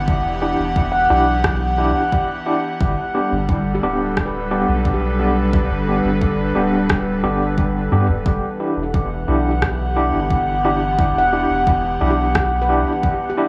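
Steeped in echo and a moderate chamber reverb over small-room ambience, this deep, hazy ambient dub excerpt in E minor moves at 88 BPM, with an airy, breathy, warbling pad holding chorused chords up front over a round, soft sub bass. An electronic kick and a tape-toned rim click set the straight 4/4 pulse, the click trailing dub echo, while a barky, lightly overdriven tine electric piano plays stabs through fast tremolo, a low-pass filter and dub echo. In the background a mellow, ringing handpan, played with soft fingertips, spins filtered, echoing arpeggios from 0.9 s as the harmony shifts from Em7 to G at 2.8 s and back to Em7 at 8.3 s.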